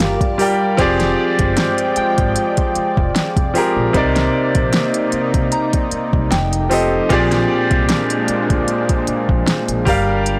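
Sensual and moody, this contemporary R&B excerpt at 76 BPM in F dorian, with a lightly swung 16th feel, sets a clear, intimate concert grand piano up front over a lush, detuned sawtooth pad with chorus, a woody, thumpy pizzicato upright bass and an overdriven electronic drum kit with a fat snare and crisp hats, while a very quiet fingerpicked steel-string guitar is heard only until 0.7 s and a soft, pure FM bell with chorus and tape echo glints in the background until 7.5 s, all in a small room with light reverb and a blown-out, overdriven sound as chords such as Fm69, Cm9 and Bb13 drift past.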